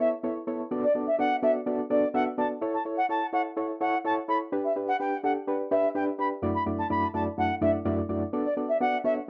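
A home cassette recording in a small room with moderate reverb gives this carefree, summery pop clip its lo-fi intimacy, moving at 126 BPM in a straight 4/4. Soft, round electric-piano-like synth keys with chorus and tremolo carry the mellow accompaniment through a gentle progression from Aadd9 through Bm7, A, G and Dadd9/F#. Above them, an airy, reedy concert flute sings the melody with vibrato and a crisp attack, its tone coloured by cassette tape and analog delay.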